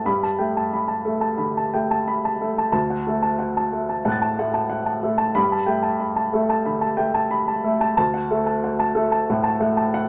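A woody upright piano carries this short passage alone from 0.0 to 10.1 s, its polished tone sitting up front with a long, ringing sustain. The piece is neoclassical minimalist piano in D major at 91 BPM in 4/4, played with a rubato feel that gives it a hopeful, tender mood. The harmony moves gently between Gadd9 and D, returning to each chord in turn across the passage, while the piano spans a register from D2 up to A6. A wet studio reverb with a short 0.6 s decay surrounds the instrument, adding a sense of space while keeping the piano present and close. Cut from a longer piece, this fragment feels like a quiet, warm statement.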